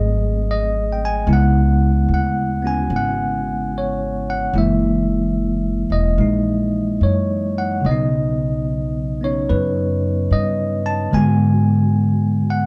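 A bell-like, bright tine electric piano sits up front over a woody pizzicato upright bass from the very start of this intimate, melancholic jazz ballad, a fragment of a longer piece that sways at 73 BPM with a gentle swing, moving from G#7b9 through C#m7, F#13 and Badd9 to G#m7b5 as the two players share one room under a moderate studio reverb.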